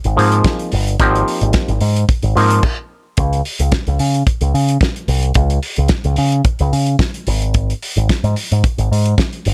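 Danceable and sultry, this disco excerpt at 110 BPM opens on an Ab69 chord with a damped 70s drum kit (dry, with dark cymbals, a fat snare and a tight kick), a punchy picked electric bass through an envelope filter, and a nasal, overdriven auto-wah clav that plays only until 2.6 seconds, then a stop runs to 3.2 seconds before the drums and bass carry on unaccompanied by chords, all up front in studio reverb.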